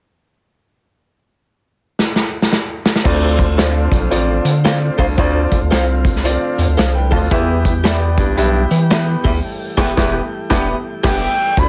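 This urgent, driving slice of uptempo 1960s-style soul opens at 2.0 seconds with a drum fill from a vintage acoustic kit, its punchy kick, medium-tuned snare, dark cymbals and pumping small-room sound sitting up front. At 3.0 seconds a distant, roomy baritone saxophone begins riffing in its low register while a clear concert grand piano with deep bass supplies accompaniment, and at 3.1 seconds the band settles on a Dm7 chord in D dorian at 113 BPM, with a swung eighth-note feel. There a round, dark analog bass with a fast attack enters, along with a smooth tonewheel organ holding sustained chords through a slow rotary speaker in the background. From 3.6 seconds an electric guitar through a small old amp adds slightly broken-up, picked stabs with analog chorus, and later the harmony moves to Em. A loose, very quiet, mellow horn section plays a second line during a band accent near the end. 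A breathy, unsteady concert flute arrives up front at 11.1 seconds with a brief tongued melody, all captured with little reverb and a heavily compressed radio sound in this cut from a longer piece.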